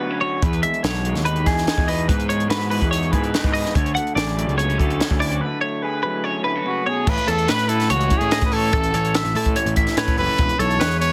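A clear trumpet with light vibrato takes the lead in pop style at 6.7 seconds, sitting up front with a slapback echo just before this playful, intricate slice of math rock and midwest emo moves into its second section at 7.1 seconds. Beneath it, a bright, twangy twelve-string electric guitar spins clean, picked arpeggios, colored by subtle chorus and its own slapback echo. A dark, slightly broken-up electric guitar played with the fingers through a small old amp adds lo-fi accompaniment from the start, while a round, punchy fuzz bass and a compact cocktail drum kit join at 0.4 seconds. The dry acoustic kit, with its dark cymbals, high-tuned snare and punchy kick, sits close in the mix. A break arrives at 5.4 seconds, and the harmony moves from Emaj7 and Dmaj7 toward A and E6. The whole sound is heavily compressed, radio-like and dry, in straight 4/4, cut from a longer piece.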